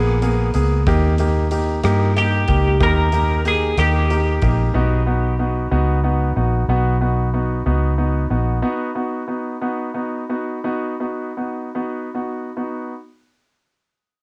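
A swaying 6/8 lilt at 62 BPM, counted in dotted quarters, carries this heartfelt pop ballad in B major, cut from a longer piece and captured as a home cassette recording with light reverb. A clean, twangy twelve-string electric guitar picks the melody through spring reverb and tape echo until 4.5 seconds, over an arena drum kit with a punchy kick, hi-hat and rim click tinted by cassette tape, while a dark, round, foam-muted fingered bass sits up front until 8.6 seconds. A brilliant, polished concert grand piano with deep bass and short sustain carries the accompaniment alone as the tempo slows, ending at 12.9 seconds.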